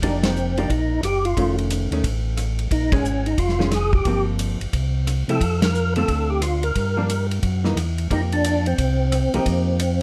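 A brisk, swung 4/4 at 178 BPM drives this greasy, soulful soul jazz organ trio excerpt in F mixolydian, with band accents hitting at 0.2, 2.9 and 5.6 seconds. Up front, a fat, percussive tonewheel organ carries the melody with key click, third harmonic percussion, chorus vibrato and a slow rotary speaker, while a second, smooth tonewheel organ supplies the bass with chorus vibrato and its rotary speaker stopped. A dark, compressed hollow-body electric guitar picks clean accompaniment beneath, and a small-room acoustic kit with dark cymbals, a tight kick and a rolled-off top keeps time on hi-hat, ride, snare and rim clicks, all in light reverb.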